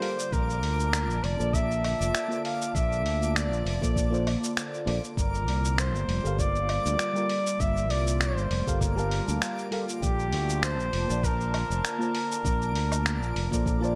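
A distant, roomy flugelhorn carries the melody up front through delay and shimmer reverb in this smooth, wistful sunset chillout excerpt, over a round FM electric piano treated with chorus and phaser and an airy, breathy pad holding sustained chords. A brilliant fingered electric bass and a thumpy kick enter at 0.3 s beside a gritty, tape-toned sampler kit of finger snaps, hi-hat, shaker and woodblock in gated reverb, while a twinkling granular texture sparkles in the background. The harmony moves between Bbmaj7 and Gm7 over a lightly swung 16th feel, framed by a plate reverb and 1980s-style digital production.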